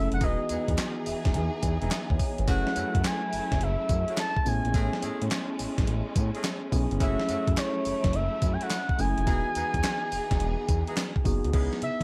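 Up front, a gated 80s digital drum machine punches through this short new jack swing cut with a thumpy kick, gated-reverb snare, handclaps, hi-hat, tambourine and crash, swung on the sixteenths at 106 BPM. A gliding sawtooth synth bass and a smooth, vibrato-laden synth lead with chorus carry the confident mood. A clean tine electric piano with lush chorus plays a fill from 0.8 to 2.5 seconds, while distant bowed strings, mellow octave-doubled horn stabs and a very quiet, crisp group handclap fill out a dry mix over chords moving from Emaj7 through F#m7 and Amaj7 to C#m7.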